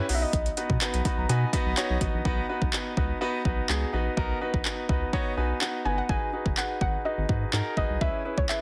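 Dance-pop at 125 BPM in B major, euphoric and summery, this short excerpt moves through a straight 4/4 groove from B to G#m7 at 6.1 seconds and on to C#m7. A clear concert grand piano carries the accompaniment throughout, intimate and polished with audible action noise and long sustain, and it plays fills at 0.8 and 4.7 seconds. Underneath, a round analog bass mixing square and sine tones with a moving notch pumps against the sidechain, dark and evolving. The deep house drum kit sits up front with a deep kick, metallic hi-hats and handclaps, layered and overdriven. A soft, gentle pluck carries the melody in two short phrases, at the start and again from 5.9 seconds, its filter sweep, chorus and delay giving it a decaying glow. Light digital ambience surrounds the mix, while heavy multiband compression lends it a heavily compressed radio sound.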